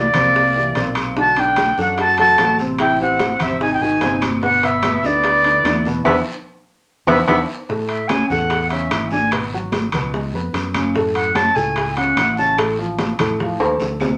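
This sophisticated, danceable slice of Afro-Cuban jazz, cut from a longer piece, opens with a bright, reedy silver flute carrying the melody up front, shadowed by a breathy tenor saxophone with scooped notes and vibrato on a second line. Beneath them, a warm upright piano with audible action noise and a woody, slightly detuned character supplies the accompaniment, while a growly, punchy fingered electric bass anchors the low end. The percussion bed blends ringing metal-shell timbales, high-tuned congas struck with hard hands, tight bongos played with soft hands, a raspy, close guiro and faint, distant claves, with the congas and bongos sitting in the background. A band accent and a drum fill close the first section, and the saxophone drops out at 7.4 seconds before the flute takes a solo at 7.7 seconds, its pure tone and soft attack floating over shifting jazz harmonies. The flute falls silent at 12.6 seconds, leaving piano, bass and percussion to finish with another drum fill inside a wet studio ambience.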